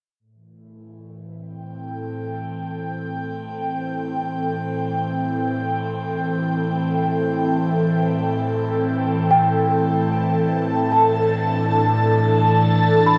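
Ambient music at a slow 56 BPM in A minor, tuned slightly sharp with A at 441 Hz, this excerpt from a longer piece has a spacious, reflective mood. An airy, breathy pad holds sustained chords from 0.2 s, built on an Am7 harmony and spanning A2 to A5, with chorus, phaser and shimmer reverb thickening its detuned, noise-flecked tone. The pad fades in across the whole passage, sitting up front with a slow attack and long release. At 9.3 s a worn celesta enters in the background with delicate, bell-like arpeggios between G5 and B5, its felt-hammered sound slightly out of tune and treated with tape echo and shimmer reverb. A wet scoring-stage reverb of about 2.0 seconds and a dark production lend the passage a hushed depth.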